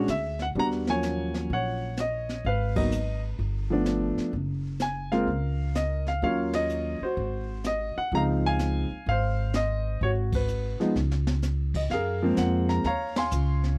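Playful and relaxed, this swinging jazz piano trio excerpt moves at 127 BPM in 4/4. A warm grand piano carries the melody with an intimate, up-front tone and audible action noise, over a woody pizzicato upright bass on steel strings. Brushes on a small-room drum kit bring dark cymbals, a high-tuned snare and a boomy kick, sitting lower in the dry, close 1970s-style mix, with band accents at 2.7, 6.5, 10.2 and 13.1 seconds and a drum fill at 11.0 seconds before the harmony settles on Gbmaj9#11 at 11.9 seconds.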